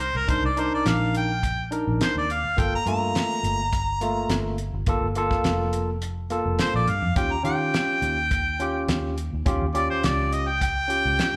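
This brief cut from a longer piece sounds like a live club gig heard through the venue's PA, with light reverb and a small-room ambience around the band. It is a brooding, smoky soul blues on a straight eighth-note feel, moving through Cm9, Gm9 and Eb7. A clear harmonica takes the solo up front for the whole stretch, its jazz-style line shaded with light vibrato and scooped notes and roughened by overdrive and a slapback echo. Beneath it, a barky tine electric piano enters at 0.3 seconds with bright, clean, direct accompaniment, also carrying slapback echo. A vintage muted fingered electric bass gives a dark, round, punchy foam-muted low end through an amp. A damped 70s acoustic kit keeps time on hi-hat, a fat snare and a tight kick, all sounding dry.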